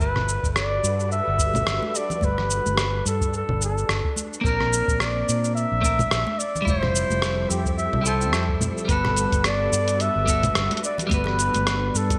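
A mellow flugelhorn leads this sunny sunset chillout fragment, sitting up front with a jazz-style vibrato, scooped notes and a touch of delay on its vintage tone. Beneath it, a silky string machine holds slow-attack chords in the background, colored by phaser and ensemble chorus, while a dark, round fretless bass adds punch with a subtle chorus. The gritty, compressed sampler-style kit of cabasa, congas, hi-hat and rim click sits forward with gated reverb over a deep analog electronic kick, all riding a swung sixteenth-note feel. Close, dry congas and bongos struck with hard hands join in the background at 1.5 s, and a clean, picked electric guitar with delay enters at 4.4 s. The harmony moves from Gmaj9 through Bbadd9 and Fmaj9 before returning to Gmaj9, all wrapped in moderate plate reverb and a bright 1980s-style digital sheen.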